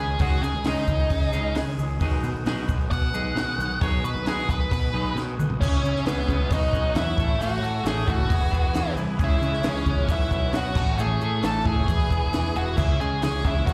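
Indie rock at 134 BPM in a jangly, carefree mood, heard as a live club performance cut from a longer piece, with an up-front octave-fuzz lead guitar soloing over C#sus2 and B6 until a drum fill at 5.2 seconds leads into a cycling C#m, Bsus2, A, E progression. A round, overdriven fuzz bass and a compact cocktail kit with a punchy kick, high-tuned snare, dark cymbals and toms drive the band, while twangy fingered guitar with spring reverb and clean picked guitar with subtle chorus play riffs in the background, both with slapback echo. A mellow, flute-like tonewheel organ holds chords through a fast rotary speaker with audible key click, and a grainy egg shaker sits distant in the mix.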